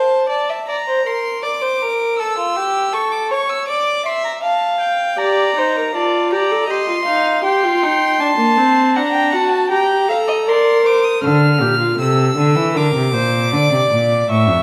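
Solemn and contemplative, this excerpt from a baroque-style fugue for string quartet, played in reedy gut-string period style, opens with a lightly vibrato first violin carrying the high melody over a dark, nasal second violin line; a warm, smooth-topped viola accompaniment joins at 5.2 s, and a rich cello bass enters at 11.2 s as the second violin stops, the whole bathed in a wet recital-hall reverb.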